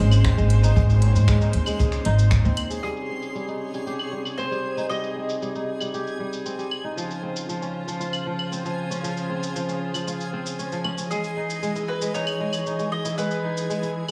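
This playful folktronica excerpt opens with a bowed string quartet holding rich, close chords, bright fingerpicked kora arpeggios through delay, a dreamy reversed texture, a woody pizzicato upright bass, and a crisp-hatted electronic kit of claves, snaps and shaker, joined by a punchy, distant kick that drops out after 2.4 seconds. The bass gives way at 2.8 seconds to an up-front, round mandolin melody with delay, as a filter sweep moves across the kora and the chords shift from Abadd9 through Abmaj7 and Dbmaj7 to Emaj7 in a small, lightly reverberant room.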